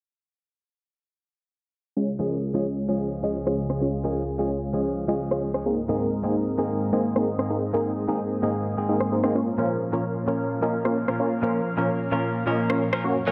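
Festival progressive house at 130 BPM in 4/4 with a straight feel, this excerpt in Db major, tuned to A4 = 437 Hz, sounds uplifting and triumphant. At 2.0 seconds a lush, thick pad of detuned sawtooth and square waves enters with slow attack and long release, holding sustained chords through a chorus effect, while a punchy, airy supersaw stab plays a riff through a low-pass filter and delay, its detuned unison layered with noise and a filter pluck. A clean, direct-recorded electric guitar joins at 2.2 seconds with picked, compressed accompaniment touched by delay. An overdriven, layered electronic rim click arrives at 3.5 seconds to carry the drums. The harmony moves from Db to Abadd9 to Bbm as a filter sweep runs across the passage, all set in a moderate hall reverb with a 1.6-second decay and a low-pass filter over the mix.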